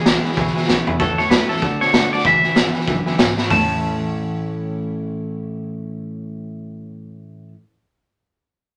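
Rollicking and rowdy, this brief rockabilly excerpt swings at 191 BPM in A major, moving through E, A, D and E. A bright, twangy clean electric guitar carries the melody while a second picked electric guitar, slightly broken-up through a small old amp, drives the riff, backed by a full-bodied dreadnought acoustic picked on old strings, a worn, slightly detuned upright piano with short sustain, and a woody, thumpy pizzicato upright bass on gut strings sitting in the background. Up front, a gritty, saturated garage drum kit with a punchy kick and rolled-off top snaps in a fill at 3.3 s before dropping out at 3.6 s, all in a moderate studio reverb.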